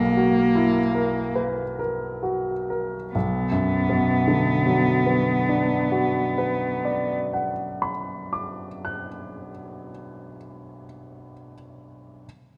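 Romantic classical music for cello and baby grand piano in B minor, elegiac and yearning, moving at a rubato 32-40 BPM in a passage cut from a longer piece: a dark, smooth, bowed cello sings the melody up front with vibrato until 7.1 s, while a clear, intimate piano with audible action noise and long sustain accompanies until 12.3 s, the pace slowing over the first 3.1 s as the harmony settles from F#7/B to B minor, set in a wet scoring-stage reverb.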